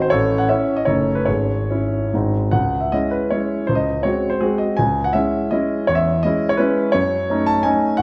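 Nostalgic and wistful, this short passage from a longer romantic piece is a triple-time dance in C# minor for solo concert grand piano, moving with free rubato between 134-177 BPM and leaning on dotted rhythms. The piano sits up front with a clear, natural tone, deep bass and long sustain, set in a wet recital hall reverb. After an opening phrase, a new section begins at 2.5 seconds on C# minor and moves through G#7/C# and C#m/E before reaching D#m7b5/F# near the end at 8.0 seconds.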